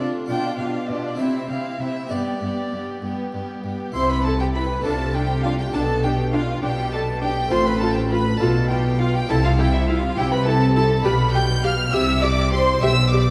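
Moving in 6/8 at 67 BPM counted in dotted quarters, this festive, brilliant baroque-style concerto movement in C major, cut from a longer piece, sets a distant solo violin with rich vibrato and a smooth chamber violin section high on the melody over a lush studio violin section's second line, a focused viola section, a close cello section on bass and an airy, plucked harpsichord in the background, with a clear, up-front double bass section joining at 3.9 seconds, heard in a wet recital hall with a dark production.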